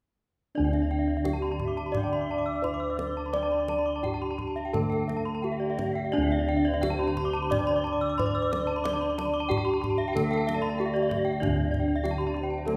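A wet, resonant hall surrounds this brilliant, ceremonial excerpt of Balinese gamelan in D slendro, moving at 86-96 BPM in a straight 4/4. Round, beating bronze gongs anchor the bass from 0.5 s, while ringing bronze metallophones carry the melody, a lower accompaniment and two bright upper arpeggio lines, the paired tuning of the melody and arpeggio instruments producing shimmering beats. A deep, dry kendang struck with hard hands sits in the background, and from 1.5 s a distant, hollow silver flute with vibrato adds a mellow second line.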